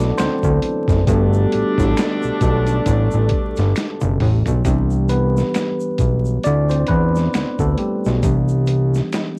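A slow, soulful neo-soul groove at 67 BPM in G major opens with a clean, phaser-tinged tine electric piano soloing up front over a fat, saturated analog bass, a gritty boom bap kit with a thumpy kick and high-tuned snare, and finger snaps and egg shaker joining at 0.2 s. A mellow French horn section holds sustained chords while a tight horn section adds octave-doubled stabs with light vibrato, both dropping away by 4.6 s after a drum fill from 3.8 s. That leaves the piano, bass, drums, snaps and shaker to carry the smooth swung pulse through lush seventh and ninth chords. This excerpt has a lo-fi home-cassette sound, with vinyl crackle and light reverb.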